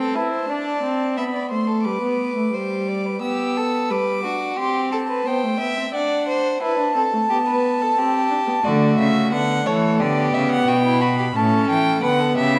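A rich, reedy single violin carries the melody high above the texture in this elegant, lively baroque-style fugue for string quartet, taken at a moderate 88 BPM in straight 4/4. A second violin, equally close and gut-strung in period style, weaves a lower line beneath it while a single viola, bowed with light vibrato and sitting up front, fills in the accompaniment. The music settles into G major at 3.2 s, moving through chords such as G/B, Am7/C and D7 before heading toward Em7 and A7. At 8.6 s a cello enters on the bass line, adding a full, resonant foundation for the remaining seconds of this excerpt, which is cut from a longer piece. The players sound set in a spacious scoring stage with a generous, lingering reverb, and the overall production leans dark and mellow.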